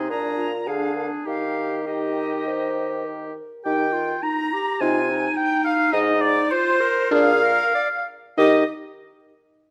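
In a flexible, rubato 4/4 that moves between 91 and 107 BPM, this short passage from a quick classical-period movement for wind quintet in Eb major sounds graceful and cheerful, and it slows from 2.5 to 8.4 seconds. A silver concert flute carries the melody with an airy, metallic tone, vibrato and a crisp attack, though it sits more distant than the others. An up-front oboe with a soft attack and smooth top shapes the second line, while a clear, close-miked clarinet and a punchy, present French horn with light vibrato fill in the accompaniment. A mellow, vintage-toned bassoon anchors the bass with light vibrato. The harmony moves from Bb7 to Eb, through Cm, Ab69 and Bb, and settles back on Eb at 8.4 seconds, all heard in light reverb through close, detailed microphones that show some lossy compression artefacts.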